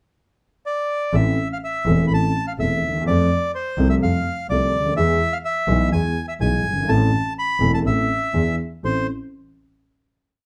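Passionate and sultry, this short, complete tango moves with a rubato feel in 4/4, opening with a bandoneon pickup at 0.7 seconds before a dark, mellow grand piano and a bowed double bass join at 1.1 seconds in a milonga rhythm. The reedy, airy bandoneon sits up front with a motif-based melody of song-like phrases, while the intimate, vintage-sounding piano, with audible action noise and deep bass, and the smooth, even bass with vibrato move through Am, F, E and back to Am before an E7 resolves to a final Am chord at 8.8 seconds. A moderate club reverb surrounds the performance.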